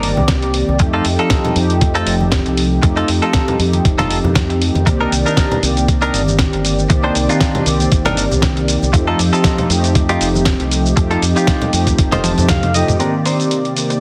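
Heavily compressed with a radio-like sound and a moderate echo-chamber reverb, this sensual, groovy nu-disco excerpt at 118 BPM swings its sixteenths over Cm9 and F7 chords: mellow, brassy synth brass with chorus, tape color, sidechain pumping and dub echo carries the accompaniment; a bright, twangy clean electric guitar riff drifts through lush chorus, a low-pass filter and dub echo before a fill at 12.0 seconds; a round, punchy fingered bass with an envelope filter pumps beneath; a gritty sampler-style kit with a fat snare, hi-hat, shaker and toms, adding a fill at 12.2 seconds, plays alongside a thumpy electronic kick and very quiet ringing congas; and a thick, airy unison pad enters only at 13.0 seconds.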